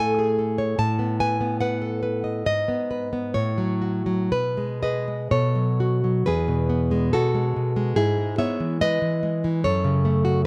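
Sunny and warm, this short cut from a longer romantic piece for solo classical guitar moves in a rubato 2/4 at roughly 58-75 BPM in E major. A fingerpicked nylon-string guitar sits up front, ranging from E2 to A5, and drifts through F#m/A, B7/A, G#m and B6 before reaching a home E chord at 6.3 seconds, then moves on to E/G# and F#m. Close, detailed microphones and light reverb give the acoustic tone an intimate clarity.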